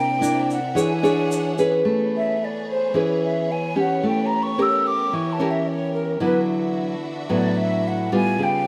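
A straight 4/4 bossa nova groove at 110 BPM in A major carries this sophisticated, romantic piece, where an up-front, fingerpicked nylon-string guitar plays the accompaniment, a grainy, vintage tube shaker sounds from 0.2 to 1.9 seconds, distant, lush bowed strings with vibrato hold sustained chords, and a breathy, hollow jazz flute with plate reverb carries the melody before soloing from 1.8 seconds over chords moving through Amaj9, A7b9 and D69, set in a moderate studio reverb.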